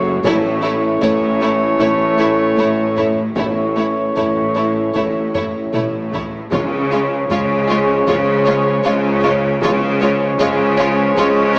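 A straight 4/4 pulse at 77 BPM drives this heroic, relentless cut from an epic orchestral film score, with a taiko ensemble struck by heavy sticks in a live room in the background, a drum fill at 5.4 s, and close, dry timpani entering at 6.5 s as the harmony moves from A to C#. Mellow French horns and tight, vintage-toned trombones hold sustained chords while a dark, distant trumpet section fires off stabs, and focused cellos join rich, distant double basses on the bass line. Up top, an expressive chamber violin section carries the melody in the background, with a lush, intense second line from the symphonic violins and a very quiet, smooth viola accompaniment, set in a moderate scoring-stage reverb with a small-speaker tone.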